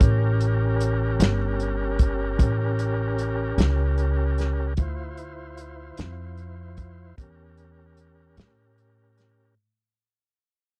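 A brooding, smoky slow blues in 12/8 at 50 BPM opens with the full band at once: a tonewheel organ holding thick, lightly overdriven chords through a slow rotary speaker with vibrato, an upright bass plucked with a woody, thumpy tone, and a soul drum kit of hi-hat, kick and medium-tuned snare. The drums sit up front with a tight kick, a rolled-off top and a pumping room sound from a tight booth. The bass is also up front, its steel strings giving the low end a warm, thumpy body. The organ rests further back, filling the space with full sustained harmony over A7b9, moving to Dm7 at 4.8 seconds and returning to A7b9 at 7.2 seconds. The sound is dry and close, and the whole passage, cut from a longer piece, fades out across its roughly 9.6 seconds.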